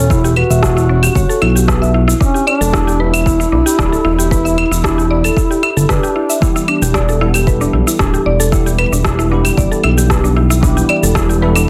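Organic downtempo at 114 BPM in a straight 4/4, hypnotic and earthy, opening with a mellow, folk-style duduk melody full of vibrato and scooped notes over a woody, round synth pluck playing chorused, delayed arpeggios and a smooth, sawtooth-edged gliding bass that sits up front with sidechain pumping. Overdriven electronic drums, a deep layered kick plus shaker, claves and rim click re-recorded in a large room, carry the groove from 0.1 seconds, while the duduk bows out at 6.4 seconds and a bell-like, bright tine electric piano enters as accompaniment with ensemble chorus and delay. The chords move from a rootless A7 over E to G6 under light reverb and digital ambience in a dense, heavily limited modern master, cut from a longer piece.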